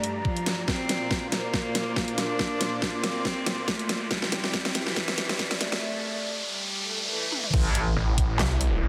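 A dense, heavily limited mix bathed in moderate plate reverb opens this heavy, menacing wobble dubstep cut at 140 BPM in half-time, where an intimate bowed cello line with light vibrato and dub echo floats over lush, bright supersaw chords under phaser and a filter sweep, a warbling, nostalgic lo-fi pad, a knocking electronic kick, a dubstep drum kit with a huge clipped snare and fills, and a background riser and swell, until the drop hits with an impact at 7.5 seconds, unleashing a metallic, chorused wobble bass and then, at 8.0 seconds, a growling, distorted saw bass.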